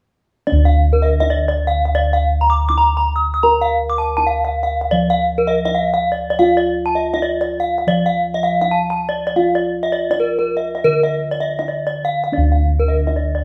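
Shimmering and brilliant, this Balinese gamelan excerpt in D pelog moves at 81 BPM in a straight 4/4. A ringing bronze metallophone, struck with a horn mallet, spins bright arpeggios with the beating shimmer of paired tuning, while round, mellow bossed gongs played with padded beaters carry the bass, both up front from 0.5 to 13.4 seconds in a moderate studio reverb that captures the band playing live in one room.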